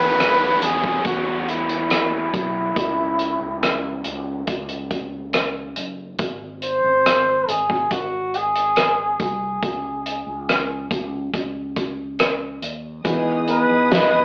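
A rough rehearsal-room recording with saturation, a small wet reverb and an AM-radio tone carries this heartbroken pop ballad in C# minor at a slow 70 BPM, cut from a longer piece. A vibrato-laden flugelhorn sings the solo melody up front over a round, amped fretless electric bass and a muffled, lo-fi indie drum kit with a fat snare and punchy kick, while an electronic downlifter sinks beneath the opening until 6.2 s. At 13.0 s a clear, intimate grand piano with audible action noise, a lush, woody bowed string section and a full-bodied picked dreadnought guitar playing arpeggios in the background join as the chords settle on Emaj7.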